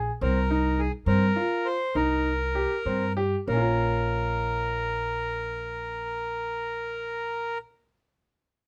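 Contemporary instrumental chamber music in an uneven 11/8 meter, this short cut from a longer piece feels urgent yet hypnotic, with a straight feel that slows down over its first 3.5 seconds. A clear, open baby grand piano spins arpeggios in its middle register while a woody, pizzicato upright bass with steel strings sits up front beneath it. The reedy accordion enters at 0.2 seconds with a narrow melody, also placed up front. The harmony moves from Cm7 to Bbm as a second section begins at 3.5 seconds. Close, detailed microphones and light reverb give the trio an intimate, present sound.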